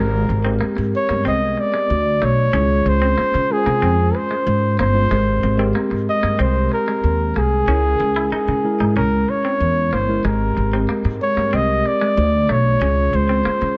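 A mellow flugelhorn carries the melody from the first moment, up front and played in a jazz style with a light vibrato, over a glossy, urban pop groove in a straight four. Beneath it, a tine electric piano supplies mellow, warm, clean accompaniment through its built-in speakers, touched with a subtle chorus. A clean, twangy electric guitar plays a fingered riff bathed in lush chorus, sitting further back in the mix and dropping out at 13.6 seconds. Woody pizzicato upright bass on steel strings sits up front, giving the low end a warm, acoustic weight. The harmony drifts between Abmaj9, Dmaj7 and Dbmaj7, with a Dbm6 at 7.7 seconds adding a wistful shade before the progression returns. Light reverb and studio ambience frame this short passage, cut from a longer piece.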